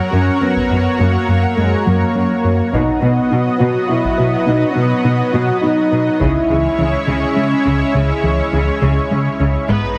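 A bright, silky analog string pad and a mellow French horn section open this tense, brooding hybrid orchestral and electronic film cue in 6/8, holding sustained chords while a tight, driving sequenced synth arpeggiates quietly beneath, a smooth, dark synth bass carries a riff, and a rich cello section plays a lush bass line in the background. Close, dry taiko drums struck with hard sticks join at 0.6 seconds, and at 9.7 seconds a symphonic violin section picks up a vibrato melody over a clear, intense viola accompaniment, just as the passage is cut from the longer piece. The mix sits in a moderate scoring-stage reverb with a heavily compressed, radio-like sound.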